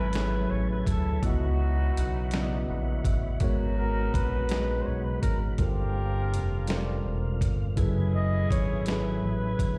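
Late-night and sultry, this slow six-eight R&B excerpt at 55 BPM sets a breathy, distant flugelhorn melody with delay over mellow tine electric piano that adds a fill from 2.3 to 3.4 seconds, a background tonewheel organ with chorus vibrato and slow rotary speaker, delayed clear horn-section stabs with octave doubling, an up-front smooth sawtooth synth bass, and a gritty, thumpy sampler-style drum kit, moving through minor eleventh chords from F#m11 to C#m11, G#m11, Gm11 and back to F#m11, heard as if played on a big sound system in a bare room.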